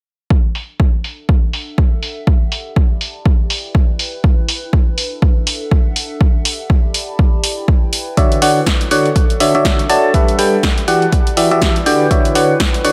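A biting, percussive FM electric piano riff arrives up front at 8.2 seconds in this euphoric, feel-good piano house excerpt, coloured by chorus, tape echo and sidechain pumping over a swung groove. Alongside it, an analog kick and a punchy drum machine playing hi-hat and snare, both overdriven and re-recorded in a large room, sit forward in the mix. A warbling, nostalgic lo-fi pad fades in from 1.2 seconds with detuned, mellow sustain, phaser and pumping, carrying added-ninth and seventh chords through light digital ambience.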